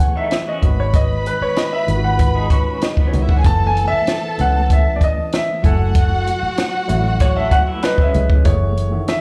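Lush 1970s-style soul at 96 BPM in F# dorian, bittersweet and cinematic, with a clear, up-front grand piano carrying a short-sustained melody over dark, distant bowed violins, a worn, slightly out-of-tune electric piano with light overdrive, a round, foam-muted bass, a tight, dry cocktail kit with a high-tuned snare, and a lo-fi, slightly broken-up guitar riff with tremolo entering at 0.2 seconds and returning at 7.2 seconds, all heard as a live gig through the venue's PA with club reverb and slapback echo on the piano, violins, electric piano and guitar.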